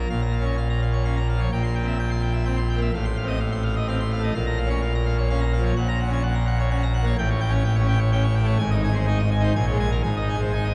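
This classical organ toccata in Bb minor is brilliant and majestic, moving at 127 BPM in a straight 3/4 through a short cut from a longer piece. A solo pipe organ on full organ with mixtures sits up front across the whole 10.7 seconds, its baroque voicing and audible chiff spanning Ab1 to C6 as the harmony passes from Bbm through C7/Bb, F7/A, Gb/Bb and A7 before settling between Bbm7 and Ab. A cathedral reverb with a 4.3-second tail surrounds the instrument, and the production is dark, rolling off everything above 11.0 kHz.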